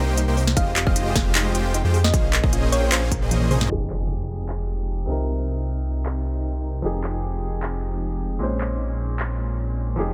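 A thick, detuned saw bass runs under this entire bittersweet, emotional future bass excerpt, saturated and chorused, pumping with the sidechain in a half-time feel. The opening drop pairs huge, bright supersaw chords, sent through a low-pass filter, with two gentle, tine-like synth plucks sitting in the background: one carries the melody through chorus and digital delay, and the other, darker one plays arpeggios through chorus, phaser and delay. A punchy, overdriven electronic kick drives this first stretch alongside a crisp trap kit of finger snaps, handclaps, hi-hats, a sharp snare and toms, with low-pass filtering on the hats, snare and toms and a drum fill leading into the next part. At 3.7 seconds a very quiet impact marks the arrival of a brilliant, slightly worn concert grand piano, up front with deep bass and delay, while a filter sweeps across the drums. From 4.7 seconds a shimmering, ethereal ambient pad rises with a slow attack and granular, octave-up sparkle, its own filter sweep adding motion. 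The minor-seventh and minor-ninth chords and the light reverb keep the mood tender and wistful.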